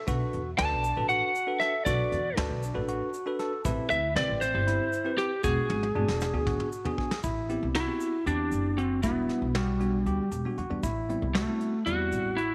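Pulsing in 7/8 at 234 BPM in eighths, this brooding, tense progressive instrumental in A dorian sets a lightly driven, slightly broken-up lead guitar melody up front from 0.6 s over barky and bell-like tine electric pianos playing arpeggios and accompaniment, a woody, thumpy pizzicato upright bass, a soft brush drum kit with a punchy kick that plays a fill from 5.7 to 7.2 s, and a grainy egg shaker in the background, all bathed in moderate plate reverb as the chords move from Bm7 through Am7, E9 and Em7 in this section cut from a longer piece.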